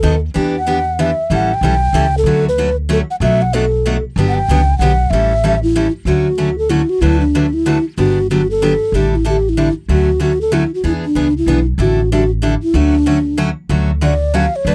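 A dry, close recording in a 1970s studio style frames this lively, swinging passage of acoustic string swing in D major at 189 BPM in 3/4. A breathy, mellow clay ocarina with expressive vibrato and a soft attack carries the melody up front. Beneath it play a bright, full-bodied picked steel-string guitar whose fresh strings give off finger squeak, and a woody pizzicato upright bass; the harmony moves through chords such as Em7, A7, Dmaj7 and Gmaj9 before the ocarina takes a short solo at 13.7 seconds.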